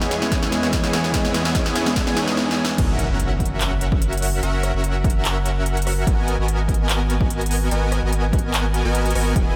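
A fat, detuned sawtooth polysynth carries the bright riff up front through this dreamy, emotional future bass excerpt, pumping with sidechain under chorus and analog delay, while a soft, round pluck sits dark in the background and a very quiet, ethereal pad holds airy chords during the build-up. Layered electronic drums bring a punchy kick and snare, crisp hats, handclaps, rim clicks and crash cymbal, with a faint riser leading to the drop at 2.8 s. There an impact lands and a deep, thick, saturated sub bass enters, the mix soaked in a huge, dreamy reverb.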